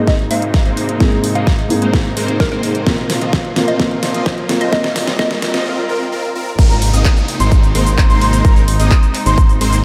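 A hollow, bouncy square pluck and a felt-muted upright piano with audible action noise open this triumphant, uplifting festival progressive house excerpt at 129 BPM in Ab major, over veiled con sordino strings, huge detuned supersaw chords under a filter sweep, and a thick, beating saw bass, all building up through a drum fill on a punchy electronic kick and an overdriven pop kit with deep snare, handclaps, hi-hat, shaker and crash. Faint risers and downlifters enter at 3.4 s, and the pluck drops out at 5.3 s, before the drop at 6.6 s brings in a bold, nasal unison lead playing high arpeggios with vibrato. Sidechain pumping and tape echo run through the piano, supersaws and lead, and the whole dreamy mix is soaked in church reverb.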